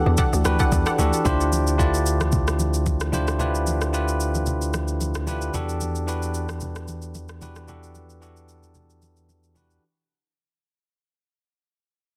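Hypnotic and late-night, this 112 BPM amapiano excerpt with a light 16th-note swing is carried throughout by a bell-like, clean tine electric piano, soft-handed background congas and an up-front, tape-warm R&B drum kit of soft kick, rim click and shaker with soft clipping on the snare. It opens with a hollow, bouncy log drum bass and a detuned square pluck with chorus and delay, which give way at 1.3 seconds to a round, deep analog bass, as chords move from Em11 to Dm11 and back while a fade-out runs to the end of this dense, heavily limited, lightly reverberant mix.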